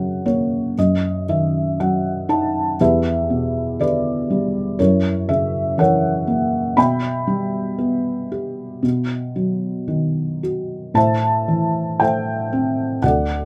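A close, detailed recording with light reverb frames a felt-muted upright piano, its soft, intimate tone thick with felt and audible action noise, playing solo from 0.0 to 13.4 seconds in a reflective, dark classical piece in E minor at a rubato 59 BPM, opening with a fill over F# and F#m6 before the harmony drifts through Em7 and F#7 and settles toward B and Am.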